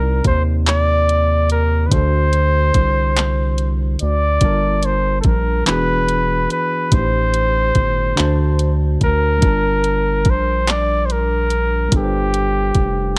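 A punchy flugelhorn with light vibrato and slapback echo carries the yearning, late-night melody of this slow six-eight R&B excerpt in G minor at 48 BPM, over a worn, slightly out-of-tune tine electric piano lightly overdriven through a combo amp, a deep, round analog bass, and a soft electronic drum kit of kick, warm hi-hat and handclaps entering at 0.2 s, set in a dry room as the chords move from Cm9 through D7, Gm7, E7 and Am7b5 back to Gm7.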